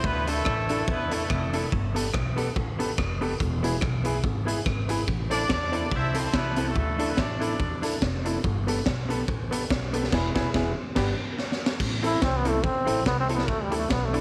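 Ska at 143 BPM in A minor, driving and energetic, with a light swing on the eighth notes in this short cut from a longer piece. A raw garage drum kit sits up front, gritty and saturated, its high-tuned snare and punchy kick ringing in a bright stone room, while a pizzicato upright bass with a woody tone carries the low end throughout. Behind them, a dark, clean hollow-body jazz guitar and a polished upright piano with long sustain fill in chords and stabs over a progression built on Dsus2, Gadd9, E and Am. A clear horn section in octave doubling, carrying a light vibrato and tape echo, states the melody in short bursts, then the band hits a shared accent and a drum fill leads at 11.8 seconds into a bright trombone solo up front. Light reverb and small room ambience frame the whole recording.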